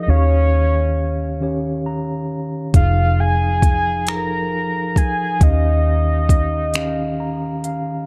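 A dark, lightly reverberant production frames this yearning, sultry slow six-eight R&B fragment, built on a soft octave-layered synth lead with chorus, a round, detuned, wave-folded tone and vibrato singing the melody up front. A mellow, clean tine electric piano accompanies through the Eb9 and Fm7 changes and adds fills at 1.4 and 6.7 seconds, while a vintage foam-muted fingered electric bass gives a round, punchy low end. At 2.7 seconds a smooth electronic R&B drum kit enters with finger snaps, silky hi-hat and a soft kick.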